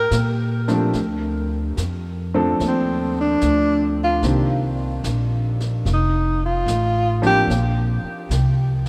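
Jazz ballad in Bb major at 74 BPM with a gentle swing, intimate and tender, where a breathy, mellow tenor saxophone solos up front with vibrato, subtone and scooped notes over woody pizzicato upright bass, a grand piano whose action noise is audible entering at 0.7 s, and softly brushed drums, all set in a vast, echoing cathedral reverb in this short cut from a longer piece.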